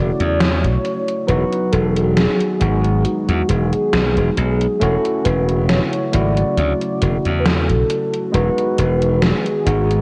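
Woozy and dreamy, this slow vaporwave excerpt at 68 BPM in E major drifts between Dmaj9/E and Emaj9 chords. A velvety, detuned synth lead carries the melody through chorus and tape echo over barky, gritty overdriven tine electric piano, a faint silky string machine, and up-front glassy slap bass, while a gated 80s digital drum machine enters at 0.2 seconds with overdriven hi-hat and a gated-reverb snare, all wrapped in light reverb and the warbly pitch drift of worn cassette tape.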